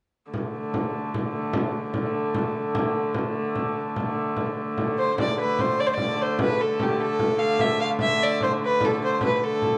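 Medieval dance in 6/8 at 99 BPM, counted in dotted quarters with a straight feel, carrying an ancient, mysterious mood in this short cut from a longer piece. A rich, nasal hurdy-gurdy holds the drone from the opening at 0.3 s, its wheel-bowed, keyed tone earthy with an airy bow and a smooth top, sitting up front in a range from D3 to A3. A small, bright frame drum plays alongside it from the start, sounding distant in a large room. At 5.0 s a single dark, woody fiddle enters on the melody, bowed with light vibrato between G4 and F5, heard up front yet with a distant quality as the music moves into its second section. A moderate plate reverb with a 2.6-second decay lends the recording a lingering space, and the top end stops at 10.7 kHz.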